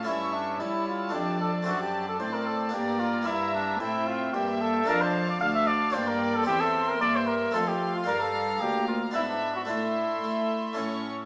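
Classical baroque-style concerto movement in D minor at 112 BPM in 3/4, stormy and dramatic, where a mellow, punchy trumpet carries the melody up front over a background violin section with light vibrato, a second violin section with a smooth-topped, gut-string line, a reedy viola section, a nasal cello section on the bass and a round, Italian-style harpsichord, all set in a reverberant recital hall with a small-speaker sound.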